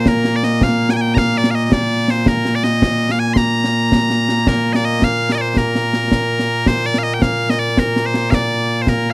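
A stirring, straight 6/8 pulse at 109 BPM drives this brief, ceremonial slice of Scottish pipe music in B-flat major, cut from a longer piece. Loud, piercing bagpipes carry the continuous melody up front from the very start, ranging from Bb2 to C6. Concert snare and bass drum join at 0.1 seconds, their dark cymbals and small-room acoustic sound sitting just behind the pipes, and the close, dry 1970s-style studio sound shifts into a second section at 4.5 seconds.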